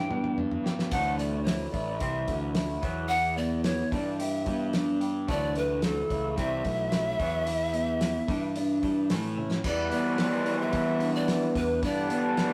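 A breathy, reedy pan flute carries the melody over jangly, carefree indie rock at 110 BPM, alongside a slightly broken-up electric guitar through a small old amp with spring reverb, a bright overdriven garage guitar, a punchy fuzz bass and a cloth-damped, thuddy drum kit with a fat snare, all caught in a rough rehearsal-room recording that moves to a new section at 9.6 seconds in this excerpt cut from a longer piece.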